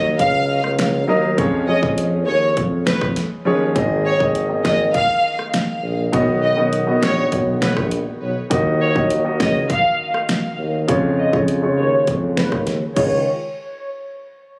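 A bowed violin section carries the melody in this sunny, summery dancehall excerpt, its smooth, even vibrato sitting close and up front, shaded by a low-pass filter and a digital delay. Beneath it, a grand piano plays accompaniment in the middle register, also filtered and placed forward, while a solo tuba supplies the bass with a soft attack, light vibrato and a roomy, classical character. A produced, layered electronic pop kit drives a straight 4/4 at 101 BPM, with a punchy kick, a fat snare, hi-hat, rim clicks, finger snaps and crash cymbal, all roughened by overdrive. The harmony in Db mixolydian moves through Ebm, Db, Absus2 and Cb, and a filter sweep runs from 3.8 s until 13.3 s; just before it ends, the music settles on Dbadd9, then drops to a brief chordless tail. The whole excerpt has a warm, small-room feel, captured on a phone in the space and washed in club reverb.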